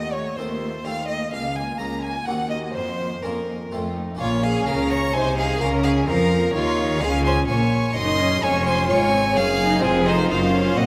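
This is a classical, baroque-style concerto movement with solo episodes, a driving and dramatic passage in B-flat minor, moving at 127 BPM in 3/4 and cut from a longer piece. A single violin stands up front with a smooth, even, vibrato-rich melody, while a distant violin section also plays the melody in the background with a focused tone and a second violin section carries an intense second line. A very quiet harpsichord in the Italian style adds airy, brilliant plucked accompaniment alongside a rich viola section. The cello section anchors the bass with expressive portamento, and at 4.2 seconds a double bass section joins it with a clear, intense tone and a smooth top. The chords shift from F7 toward B-flat minor and later D-flat and F minor, and the whole ensemble sits in a wet concert hall reverb across the 10.9-second excerpt.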